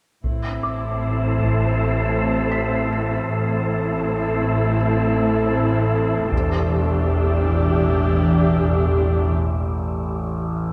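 Eerie and ominous, this cinematic suspense cue moves at 79 BPM in A minor, shifting from A minor to E minor seventh at 6.3 seconds, with a woody marimba riff in the low register over bowed viola accompaniment, a very quiet warm cello section and a rich double bass section sitting in the background. An airy, breathy wind-like texture holds sustained chords above, a resonant drone with moving overtones and chorus hums on A underneath, a soft felt-muted upright piano adds high, intimate touches with audible action noise until 6.3 seconds, and solo taiko drums played with heavy sticks enter at 0.2 and again at 6.3 seconds. The dark production sits in a wet scoring-stage reverb, and the excerpt closes on a brief break from 9.4 seconds as the drone lingers.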